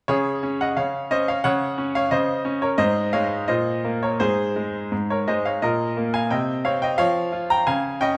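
A bright, polished baby grand piano plays alone from 0.1 to 8.2 seconds in this playful, elegant classical-period sonatina in Db major at 88 BPM in 2/4, its rubato feel and up-front, short-sustained tone set in a moderate recital hall reverb and tuned to A4 = 436 Hz, in a brief passage cut from a longer piece.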